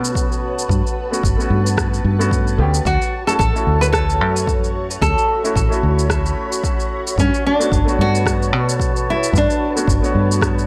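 Sunset chillout at 111 BPM with a gentle 16th-note swing, sunny and relaxed, cut from a longer piece and moving from Gmaj9#11 to Dmaj7 and back. A worn, long-sustaining baby grand with tape echo and a silky, vintage string machine with ensemble chorus hold the harmony over a foam-muted fingered electric bass. A layered electronic shaker and rim click are joined at 0.2 seconds by a punchy electronic kick, both drum parts carrying overdrive. At 2.9 seconds a full-bodied, fingerpicked nylon-string guitar takes the melody up front with delay and audible finger squeak, set in a dark, warm production with light reverb.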